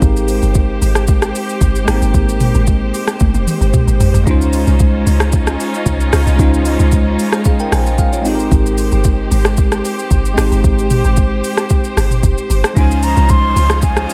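A steady, straight 4/4 groove at 113 BPM drives this relaxed, soulful amapiano cut from a longer piece in Ab major. The electronic, produced R&B drum kit sits up front with a soft kick, smooth hi-hats, rim click, shaker and toms, and a drum fill runs from 3.2 to 4.3 seconds. Alongside it, a deep log drum bass gives round, percussive, dark hits with a fast attack that then decays. A bell-like tine electric piano plays bright, clean accompaniment through a phaser, while a lush bowed string section holds sustained chords with vibrato and a pumping sidechain feel, moving between Abmaj9 and Dbmaj7. Near the close, at 12.8 seconds, a breathy, mellow concert flute enters with a short tongued melody through a digital delay, its tone slightly unsteady. The sound is dry, with little reverb.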